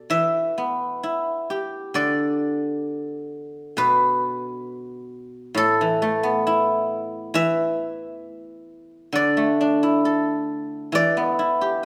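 A solo guzheng, bright and silvery, rings out up front in this pastoral, flowing fragment of Chinese traditional music, played with fingerpicks across a span from A2 to E5. The rubato phrasing gives the 11.8-second passage an unhurried, drifting quality, and light reverb adds a gentle sense of space around the plucked strings.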